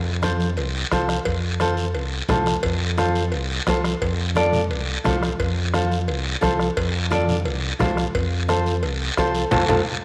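A straight four-beat cumbia pulse drives this sunny, festive Latin excerpt: a round, deep analog bass opens at 0.0 s, an up-front fingerpicked flamenco guitar joins alongside a dry, raspy guiro, a soft-beaten bombo and bright, distant congas, ringing metal cowbell and timbales sit in the background under a wet echo-chamber reverb, and the band lands an accent at 9.5 s before a drum fill at 9.9 s.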